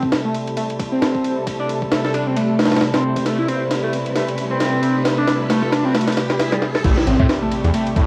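Swung sixteenths drive this raw, swaggering breakbeat cut at 134 BPM in A minor, where a gritty, pitched-up sampler kit with a thumpy kick and high-tuned snare backs a screaming, guitar-like overdriven synth lead riff with phaser and tape echo, dark bowed strings hold sustained chords under a low-pass filter and sidechain pumping, both filter-swept through a build-up with a drum fill from 3.3 s and a very quiet electronic riser entering at 3.4 s, until the drop at 6.8 s brings in a swirling, thick, detuned saw bass and an impact, all carrying the character of a home cassette recording with vinyl crackle.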